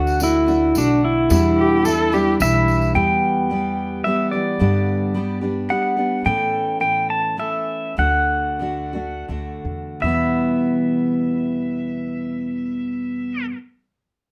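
Wistful and reflective, this excerpt of acoustic folk in 3/4 and E dorian moves at 77-109 BPM, easing into a slowdown from 6.3 to 10.0 seconds under light reverb. A clean, compressed electric pedal steel guitar, played with fingerpicks and slide, carries the melody with volume swells and slapback echo over a full-bodied picked dreadnought acoustic guitar and a woody, dark pizzicato upright bass. In the opening moments a jingly, bright tambourine sounds from a large room, and a single bowed cello adds an expressive second line with vibrato and portamento from 1.6 seconds.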